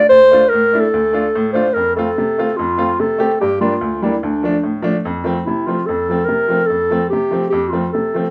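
A straight 4/4 pulse at 146 BPM drives this festive yet bittersweet klezmer fragment, cut from a longer piece, where a dark, smooth-topped clarinet sings a classical-style solo melody up front while a clear, woody upright piano with audible action noise and short sustain accompanies closely through moderate studio reverb, moving from D minor to F major at 5.1 seconds.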